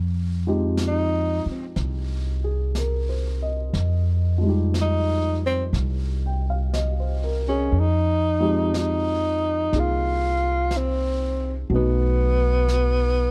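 This is a smoky recording with a dark, warm production and light reverb, cut from a longer jazz ballad in F minor at a slow 61 BPM, swung gently in 4/4. A woody, thumpy pizzicato upright bass on gut strings opens at 0.0 seconds and sits up front. It is soon joined by a warm upright piano whose short-sustain chords fill the middle. A polished brush kit, airy in its studio room, adds brushed snare with a medium-tuned head and hi-hat beneath. At 0.9 seconds a breathy tenor saxophone enters up front, bathed in plate reverb, its subtone, vibrato and scooped notes carrying a wistful solo through the opening passage. The harmony rests on Fm9 before moving to B7 near the close, after the music shifts into a new section at 7.7 seconds.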